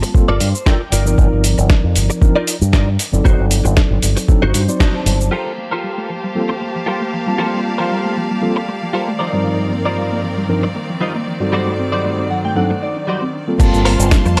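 A tape-warm sampler-style kit with low-passed hats, shaker, snare and cymbals opens this sensual, cosmic nu-disco excerpt, joined by a gritty, thumpy electronic kick and a punchy, up-front, envelope-filtered fingered bass that pumps against the kick. The three drop away by 5.4 s as bright, intense bowed strings and a soft, round pluck arpeggio carrying a filter sweep enter, then return at 13.6 s. Meanwhile, a mellow tine electric piano with delay and a clean, picked, direct guitar riff with chorus, delay and fills play throughout under light digital ambience.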